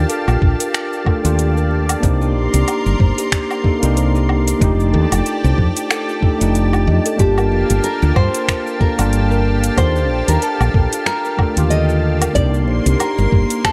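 Sunset chillout with a wistful, warm mood and a relaxed, swung sixteenth-note feel, heard as an excerpt of a longer piece. A worn, slightly out-of-tune tine electric piano with digital delay carries the accompaniment over a thick, detuned unison pad whose slow attack, long release and chorus give it a bright, lush glow. A woody, hollow-body fretless electric bass sits punchy and up front beside a gritty, thumpy sampled kick. The electronic R&B kit adds finger snaps, metallic hi-hat, shaker and woodblock with an overdriven edge, while a soft, ringing kalimba plays delayed arpeggios in the background. At 7.2 seconds a full-bodied, fingerpicked nylon-string guitar enters with the melody, its deep classical tone also touched by delay, as lush extended chords such as Ebmaj9#11, Cm9, F13 and Gm9 drift by under a light reverb.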